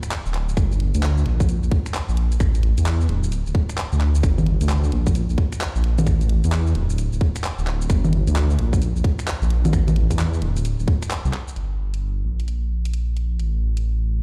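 A dark, detuned sawtooth bass rumbles deep and up front from 0.3 s, its unison voices beating over a sustained sine core to anchor this skippy, late-night two-step UK garage cut at 131 BPM with swung 16ths, while a tight, overdriven electronic kick punches until 11.0 s beside a layered garage kit of congas, finger snaps, handclaps, hi-hat and shaker carrying its own grit and small-room reverb, the mix sounding as if played on a big sound system in a bare room.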